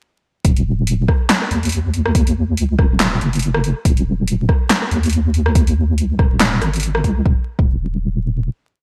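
Bright 1980s-style digital production dusted with vinyl crackle and a close, nearly reverb-free room frames this heavy, cavernous deep dubstep piece in Eb minor at 141 BPM with a swung half-time feel, where a drop from 0.4 s sets an up-front, overdriven electronic kick and a punchy, overdriven deep house kit of closed hi-hat, rim click, handclaps and snare, touched with gated reverb, against a deep, dark wobble bass of detuned square and sine tones with chorus and long gliding notes that rings on alone after the kit stops at 7.1 s and the kick at 7.7 s, until 8.5 s.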